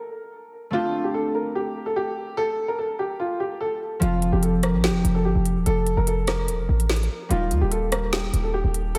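A worn, boxy grand piano with tape echo and audible action noise carries the melody over a ringing concert harp at the opening of this dark, menacing half-time drill excerpt, until at 4.0 seconds a punchy, heavy 808-style bass and an electronic drill kit with crisp hi-hats, rim clicks and a woody snare arrive, the mix soaked in a lush, dreamy hall reverb.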